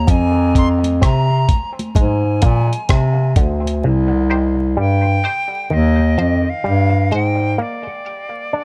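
Swung sixteenths in a slow 4/4 give this deep, hypnotic dub reggae fragment its gait, with a gritty, compressed sampler-style drum kit thumping up front on kick, hi-hat and rim click until it drops out at 3.8 seconds, while very quiet, close, dry congas patter on. A mellow, roomy bass clarinet carries the low line until 7.6 seconds, a percussive, stringy muted clav through a combo amp works its riff under auto-wah and dub echo, and a bright, reedy silver flute sings the vibrato-laced tongued melody, its echoes trailing off. From 4.3 seconds a detuned sawtooth chord stab with a fast filter pluck joins through phaser and high-pass filtering, moving over Cm and then Bb in an echo-heavy mix.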